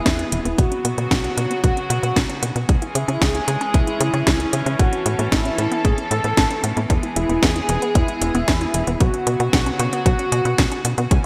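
A thick, bold sawtooth lead carries the melody in this short, danceable italo disco cut, its detuned unison voices given vintage 12-bit sampler grit, a touch of vibrato and a digital delay that trails its sustained notes before it drops out at 10.8 seconds. Beneath it, a punchy electronic kick sits up front with a cracking snare and metallic hats from a layered house kit, the kit bathed in gated reverb. A tight, driving sequencer bass with a fast, decaying filter pluck pushes the straight groove. A reedy, smooth-topped studio string section holds sustained chords, while a very quiet, lush unison pluck spins arpeggios in the background. The harmony moves through E, Bsus2, C#m and Aadd9 in a nostalgic loop. The mix has a bright 1980s-style digital sheen and a lush hall ambience.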